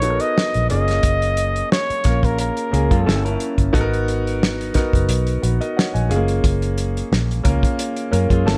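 Silky and cinematic, this short excerpt of lush 1970s-style soul moves at 89 BPM with a gentle sixteenth-note swing, cycling through rootless minor-ninth, major-ninth and diminished chords. A clear concert grand piano with deep bass and long sustain, a dark, round, foam-muted electric bass and a dry soul drum kit with fat snare and tight kick sit up front, while a punchy flugelhorn with vibrato and scooped notes carries the melody until 3.4 s. A picked, slightly broken-up electric guitar through a small old amp adds brief lo-fi riffs around 2.9 s and again at 8.3 s, and the whole mix has a close sound with little reverb.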